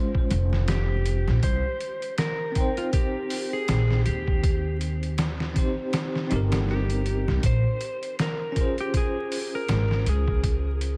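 Vinyl crackle and a light reverb frame this smoky, cinematic trip hop fragment, cut from a longer piece and swung on the sixteenths. A bell-like tine electric piano with tremolo and tape echo opens at 0.0 s, soon joined by a gritty, pitched-down sampler-style drum kit with a thumpy kick, and by a woody pizzicato upright bass, both up front. From 0.7 s a clean lap steel guitar carries the melody with slide and volume swells, roughened by 12-bit sampler grit and tape echo, over harmony that moves from a rootless Bbm7 to Cm and back to Bbm7.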